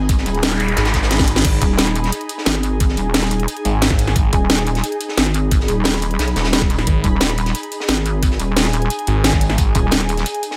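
Dark technical drum and bass, mechanical and aggressive, where an overdriven, knocking electronic kick and an up-front drum and bass kit with cracking snare and bright hats ride over a dark, small-room breakbeat kit in the background, while a pulsing, heavy wobble bass with chorus anchors the low end, a swirling, thick phased saw bass enters at 0.8 seconds and returns in brief sustained bursts, an electronic noise sweep and a drum fill arrive early, and an ethereal, airy pad with ensemble chorus and sidechain pumping hovers above in light reverb.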